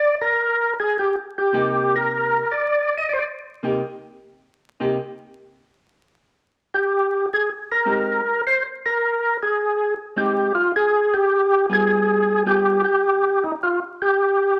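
A percussive tonewheel organ carries the melody in this soulful, smoky jazz passage in C minor, its lightly overdriven tone given movement by a slow rotary speaker and chorus vibrato. The organ opens alone, plays until 3.2 seconds, then returns at 6.7 seconds and carries on to the close at 14.6 seconds, sitting up front in the mix. A dark, clean hollow-body electric jazz guitar enters at 1.5 seconds with picked accompaniment and drops out at 12.8 seconds. The swung 4/4 groove moves at 104 BPM over a progression from Cm7 to Abmaj7 and then a tense G7b9. A large studio reverb and a layer of vinyl crackle give the sound a vintage, roomy feel, and the passage is cut from a longer piece.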